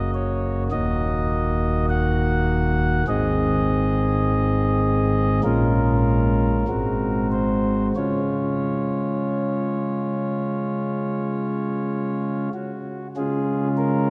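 A chamber organ on a principal stop carries this short classical chorale alone, its smooth, warm voicing sitting up front with a touch of chiff at the start of each note. The piece moves in a slow, rubato 4/4 at around 46-52 BPM in Db major, with a serene and majestic mood. Its range reaches from Eb1 in the low bass up to Gb5, giving the chords a full, grounded weight beneath the upper voices. The harmony passes from Gb through Ebm, Ab, Bbm7 and Ab7 before settling on Db at 8.0 seconds. A wet church reverb with a long 3.3-second decay surrounds the organ, letting each chord bloom into the spacious church. Cut from a longer work, the organ plays through to 14.1 seconds.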